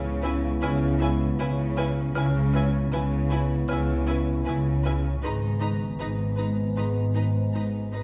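In a straight 4/4 pulse, this eerie, ominous cinematic piece sets a woody, bright marimba riff struck with hard mallets in the background over smooth bowed cellos, distant double basses and a warbling, detuned organ-like drone with ensemble chorus, while mellow French horns hold sustained chords and, from 0.2 s, vibrato-laden violin sections carry a smooth melody and a focused second line above a viola accompaniment, the whole ensemble set in a wet scoring-stage reverb.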